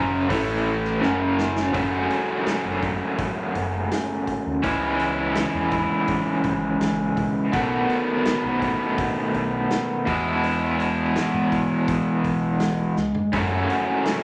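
A bright, overdriven garage guitar riff, double-tracked and up front with tremolo, and a round, dark fingered bass sitting in the background open this dark, hypnotic psychedelic rock excerpt at 83 BPM in F# dorian. A distant, roomy vintage drum kit with a punchy kick and rolled-off top enters at 0.3 seconds, with fills at 1.0 and 13.0 seconds. The riff moves through F#m, C#m, B5 and E in straight 4/4, all bathed in a wet, large studio reverb.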